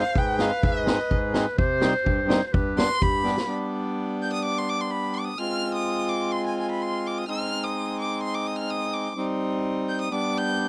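A straight 2/4 pulse at 126 BPM drives this soulful, festive klezmer piece in G phrygian dominant, where a dark, bowed violin carries the melody with vibrato and portamento over reedy, hollow accordion accompaniment, while a clarinet with scooped notes and a smooth top adds a jazz-style second line and an acoustic street-band drum kit with a boomy kick and rolled-off top plays until a fill at 3.3 seconds, both the clarinet and drums dropping out at 3.5 seconds, all captured in a close, dry 1970s-style studio sound with light reverb.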